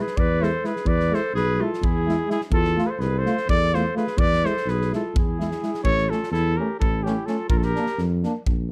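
Virtuosic and bittersweet, this brief cut from a longer Balkan brass band piece drives along at 253 eighth-note beats per minute in a straight 7/8, in E phrygian dominant. A dark, up-front trumpet with light vibrato carries the melody over a clear clarinet second line, while a distant, roomy trombone and a mellow euphonium fill in the accompaniment and a close-miked tuba anchors the bass. A big acoustic rock kit with a punchy kick and a medium-tuned snare powers the rhythm, and the harmony moves from E to F and back to E before reaching A at 5.8 s, then Bb, all within a lightly reverberant, warm production.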